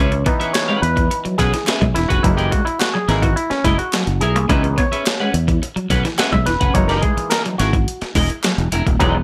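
A straight funk groove rides on a gritty, compressed breakbeat-style kit with a thumpy kick and medium-tuned snare sitting up front, while a growly, punchy fingered bass holds down the low end. The mood is cool and sly, and the harmony sways between C#m7 and F#13 every couple of seconds. An overdriven auto-wah clav, stringy and percussive through a combo amp, takes the spotlight with a solo of stabs running from the start to 9.0 seconds. Behind it, one slightly broken-up electric guitar adds compressed accompaniment bathed in lush chorus, and a second, twangy and bright with tremolo, plays a low riff further back in the mix. A faint group handclap, crisp and distant as if in a large room, joins at 0.5 seconds. The sound overall is dry and close, and this short passage is cut from a longer piece.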